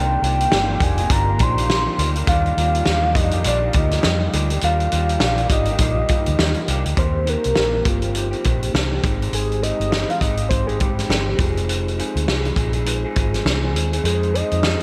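Bright 1980s-style digital production with light small-room reverb frames this hazy, laid-back stretch of indie and bedroom pop: a gritty, up-front indie drum kit with gated reverb and a round, foam-muted fingered bass anchor a slightly broken-up guitar through a small old amp with lush chorus and warbly pitch drift, a mellow tonewheel organ with slow rotary speaker and cassette tape sits in the background, and a very quiet, detuned tape-like pad holds sustained chords until 7.0 s, when the soft octave-layered synth lead, carrying the melody from the start with analog chorus and delay, takes a solo.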